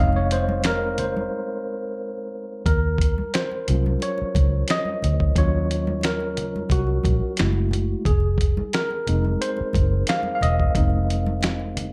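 Lightly reverberant, this sultry, smooth R&B and neo-soul excerpt at 89 BPM in Eb dorian, with gently swung 16ths, puts a worn, slightly out-of-tune, lightly overdriven tine electric piano up front, soloing throughout with a break at 1.3 seconds, over a dark, round, foam-muted fingered electric bass, a gritty, compressed, tape-warm sampler-style drum kit of thumpy kick, snare, hi-hat and finger snaps that enters at 0.3 seconds, and very quiet, ringing congas played with soft hands.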